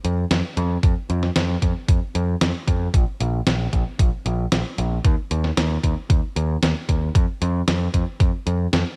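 An overdriven, picked electric bass sits up front, running between Bb1 and F2 in this moody, cinematic synthwave fragment at 114 BPM in straight 4/4, tuned to A4 = 442 Hz. A detuned 8-bit drum machine supplies hi-hat and a medium-tuned snare, and a thumpy electronic kick joins at 0.8 s. Both drum parts carry a tape-warm cassette grain and a small-room character, in a dry, close home recording.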